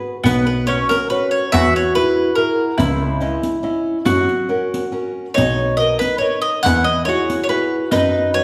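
A reverberant recital hall, with a 1.4-second decay like a church or concert hall, surrounds this short cut from a longer Italian folk serenade in B major, set in 3/4 at 141 BPM and played with a rubato, romantic and lively feel. A bright, small-sounding nylon-string guitar with fresh strings opens alone at 0.0 s, fingerpicking the accompaniment. Almost at once a round, double-strung mandolin joins with a picked second line, a mellow, intimate baby grand piano carries the bass with audible action noise and a vintage smoothness, and a riq adds close, dry percussion with dark jingles. Up front, a woody, picked lead mandolin sings the melody, pausing at 2.8 s and returning at 5.3 s. The harmony drifts through colored chords such as Bsus2, Eadd9 and C#madd9 before settling on F#7sus4.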